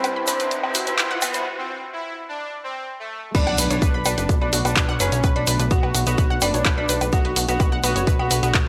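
Melancholic and cinematic, this melodic techno excerpt builds over a smooth, airy supersaw melody, an eerie inharmonic synth bell in the background, a very quiet evolving resonant pad, round chorused analog pluck arpeggios, a grainy tube shaker and a punchy analog drum machine re-recorded in a large room, while bold brass stabs and a warbling, nostalgic tape-like pad sound only through the riser to 1.5 seconds before a break. At the drop at 3.3 seconds, with an impact in the background, an up-front layered kick and a funky, wave-folded plucky bass enter, the bass pumping with sidechain compression, as the chords move from Cmaj7 to Bm7. The mix is dry and gritty with light reverb and a digital ambience.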